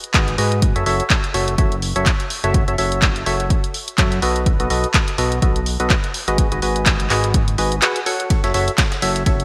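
Soulful and bittersweet, this swung piano house excerpt pairs a dry, up-front electronic kick with a punchy analog drum machine whose handclaps and hi-hat carry gated reverb, under a hollow, mellow organ stab riff with chorus, delay and sidechain pumping and a fat, detuned sawtooth bass that also pumps, moving through G#m7, F#m7 and B7 in a bright 1980s-style digital production with lush hall reverb, until a gritty, very quiet breakbeat sampler-style kit adds ride cymbal and a high-tuned snare at 8.3 seconds.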